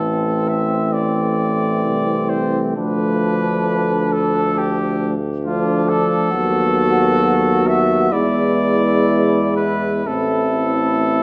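A moderate scoring-stage reverb gives this short, elegiac excerpt from a longer classical brass band piece a spacious, hymn-like glow, its rubato phrasing full of yearning as the harmony moves from A minor through D minor and B7/D# to E7 before settling home. Up front, a clear, smooth-topped cornet carries the melody, while a mellow flugelhorn with light vibrato sings a more distant, roomy second line. A mellow euphonium and a warm, faraway trombone, both touched with light vibrato, fill out the accompaniment above a vintage-toned tuba bass.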